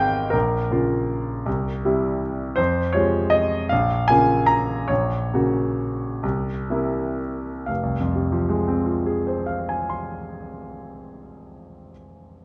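A clear, smooth grand piano with a vintage, short-sustained tone sits up front in this stormy, brooding romantic character piece for solo piano in F minor and 6/8, cut from a longer work. It moves in rubato at 38-54 BPM in dotted quarters through Bbm, C7, Fm, Bbm, Gb/Bb and C7b9, slowing from 1.5 to 7.7 seconds before settling on Fm as a new section begins, all spanning F1 to C6 within moderate large-studio reverb.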